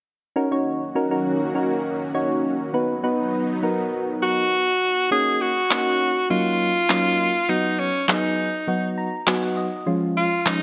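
A euphoric, carefree dance-pop excerpt at 101 BPM in a straight 4/4, moving between Ebm7 and Cb chords before landing on Db near the close. Soft, round electric-piano-like synth keys carry the accompaniment from 0.4 s to the end, their mellow, chorused tone sitting up front, with a fill between 8.7 and 9.9 seconds. Underneath, a lush supersaw pad of detuned sawtooth voices with a sub octave holds sustained chords with a slow attack until 5.1 s. A bright, punchy alto saxophone takes the melody from 4.2 s with light vibrato and a forceful, vintage pop-style edge, its lines trailed by a digital delay. Electronic handclaps with an analog character, re-recorded in a small room, join up front at 5.7 s, shortly after the second section begins, and a lush hall reverb gives the mix a generous sense of space.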